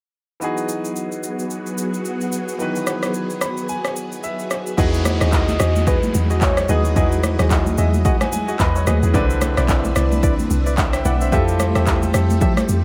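A deep, round log drum bass anchors this relaxed, soulful amapiano cut, arriving up front with a dark, percussive FM tone and a noise layer when the drop lands at 4.8 seconds. Before that, a punchy, layered deep house kit of kick, handclaps, rim click and shaker sets a swung 110 BPM groove in E major. A brilliant, intimate concert grand piano plays accompaniment with audible action noise and long sustain, throwing in fills along the way. Alongside it, a shimmering vintage string machine holds sawtooth violin chords with a slow attack and ensemble chorus, moving from Emaj9 through Cmaj9 to Fmaj9. After the drop, hollow, mellow organ stabs with chorus and digital delay sit in the background alongside thick-skinned, high-tuned congas and an electronic downlifter. At 5.3 seconds a gentle, keys-like synth lead adds a brief melody with vibrato, chorus and delay, all wrapped in a digital ambience.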